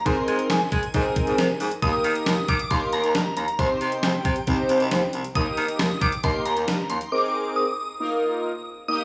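A moderate plate reverb and small-room ambience frame this wistful, bright synth-pop excerpt in Eb major, moving at 136 BPM in a straight 4/4 through chords from Abadd9 to Eb, Cm and a closing Ebsus2. A shimmering FM bell with a dreamy halo carries the high melody through ensemble chorus, phaser, slapback echo and shimmer reverb, over fat, nasal, detuned sawtooth synth brass with a filter sweep and vibrato. Underneath, a raspy, gritty baritone saxophone plays the bass line up front until about 7.0 s, while a detuned 8-bit drum machine with a thumpy kick, medium-tuned snare, hi-hat and gated reverb drives the groove until 7.1 s.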